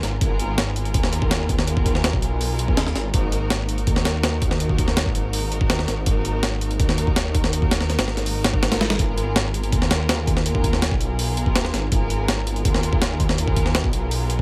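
A compressed, pitched-up breakbeat kit sits up front in this atmospheric, nostalgic drum and bass and jungle piece, its gritty, tape-tinged hits built on a thumpy kick, a medium-tuned snare and hi-hat, driving a straight 164 BPM in 4/4 throughout the 14.4-second section cut from a longer piece. Alongside it, also up front, a thick, menacing detuned saw bass with a beating, tube-saturated tone holds sustained low notes in G# dorian. A dark, woody studio string section bows lush sustained chords with vibrato and vintage 12-bit sampler character, moving from G#m69 to D#m/G# at 3.1 seconds and back at 9.0 seconds, all tuned to A4 = 435 Hz and set in a digital ambience.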